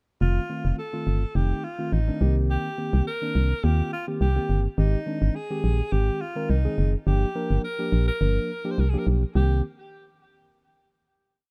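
A breathy alto saxophone sings intimate, scooped song phrases with vibrato over syncopated drop-2 chords from a mellow tine electric piano and a hollow, percussive, organ-like FM bass that sits up front with chromatic approach notes, carrying this bittersweet yet confident dance-pop piece through a build-up to a final chord at 9.4 seconds in the rough mix of a small-room home demo.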